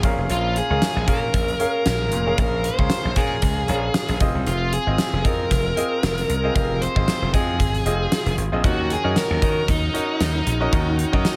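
Light reverb and studio ambience frame this urgent, dramatic 1980s-style pop piece at 115 BPM with a gentle sixteenth-note swing. A dark, distorted lead guitar with delay enters up front at 0.3 s over a big-room gated drum kit with a fat snare and tight kick, while punchy slap bass and a brilliant grand piano with short sustain move through Bbm7, Fm7 and Ebm7.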